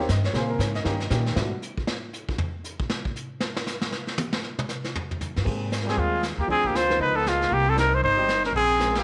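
A vintage brush drum kit with dark cymbals and a punchy kick drives this relaxed, sophisticated small-group swing and bop excerpt at 234 BPM in Ab major, taking a solo from 1.4 to 5.5 seconds while the intimate baby grand piano, with its audible action noise, and the woody, growly pizzicato upright bass sit out. Shortly after they return, a clear, close-miked trumpet with light vibrato carries the melody up front from 5.9 seconds. A vintage-toned alto saxophone with a soft subtone and scooped notes adds a second line beneath it, all set in an echo-chamber reverb and studio ambience over rich chords such as Abmaj9 and Db13.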